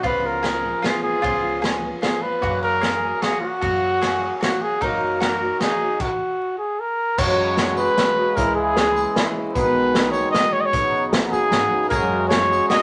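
A mellow, close-miked trumpet sings a soft-edged solo melody with light vibrato over a nostalgic indie folk arrangement in three, joined from the start by a dark fingerpicked steel-string guitar that drops out at 2.4 seconds, a boxy swing-style picked guitar in the background, double-strung mandolin arpeggios, woody pizzicato upright bass on gut strings, and a distant, roomy drum kit with dark cymbals, a punchy kick and bundle sticks. After a stop from 6.0 seconds, the arrangement builds at 7.2 seconds as a reedy, breathing pedal harmonium adds sustained chords and a jingly tambourine sits far back, while the mandolin, silent since the stop, returns near the close. Moderate studio reverb and a dusty vinyl crackle lend the fragment a faded, homespun glow.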